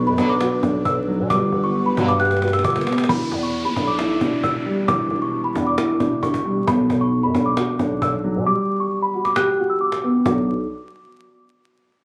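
A bell-like celesta melody, filtered and carrying digital delay, rings over a dark, boxy concert grand piano and a growling, saturated 808-style bass in this melancholic half-time trap excerpt, with a woody cajon on drums, soft-attack brass stabs that finish by 2.1 s, a breathy chorused pad that stops at 3.1 s, and an electronic downlifter arriving at 3.1 s, all heard through a phone recording of a small room with club reverb, vinyl crackle and compression.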